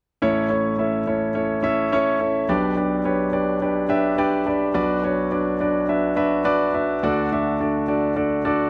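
Dramatic and driving, this pop excerpt at 106 BPM in straight 4/4 features a clear concert grand piano playing accompaniment from 0.2 to 8.7 seconds, up front and intimate with audible action noise, deep bass and long sustain in a moderate plate reverb, moving through A, G/B, Bm and D with a brief piano fill at 3.9 seconds.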